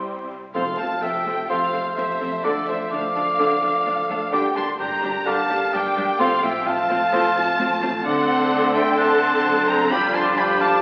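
Spirited and lively, this fast, dramatic romantic orchestral passage in F major at 128 BPM, cut from a longer piece, sets a rich, lush violin melody against a hollow flute, an up-front oboe, a mellow clarinet and a soft, distant second violin line, with bright violas, a roomy bassoon and very quiet sustained horn chords in support and dark, woody cellos and double basses underneath; clear trombone chords join at 0.5 seconds alongside a brief, round soft-mallet timpani part that ends at 1.2 seconds, the whole heard through wet scoring-stage reverb and the crackle of a very old 78 rpm record.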